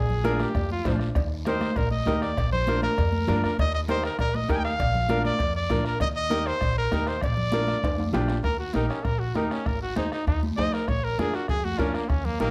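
Cumbia with a festive, joyful mood, taken from a longer piece and moving at a brisk 198 BPM in 4/4 with a straight feel in Eb major. A clear trumpet sits up front carrying the melody in a pop style, with light vibrato, scooped notes and a smooth top, and takes a solo from 8.4 seconds to the end. Beneath it, a woody, pizzicato upright bass with steel strings anchors the low end, while a bright, brilliant upright piano adds present, polished accompaniment with short sustain. The percussion stays in the background: high-tuned, thin-skinned congas struck with hard hands and given a compressed, saturated edge, a bombo played with a soft beater in a live room, and a raspy, close and dry guiro. Ringing metal-shell cowbell and timbales join the groove until a drum fill leads into the change at 8.4 seconds, where they stop. The harmony rocks mainly between Eb and Bb, with an Ab appearing in the closing stretch, and a moderate large-studio reverb lends the recording some space.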